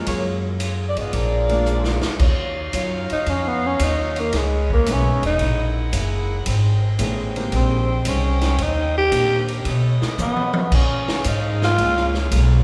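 In a moderately reverberant concert-hall sound, this energetic, joyful big band swing at 113 BPM opens with a saxophone section carrying the melody over clear grand piano, woody pizzicato upright bass, boxy picked acoustic guitar and a roomy drum kit with a boomy kick, then at 2.2 s an edgy saxophone section enters with sustained background chords, and from 3.1 s a breathy, raspy, growling tenor saxophone takes an up-front solo.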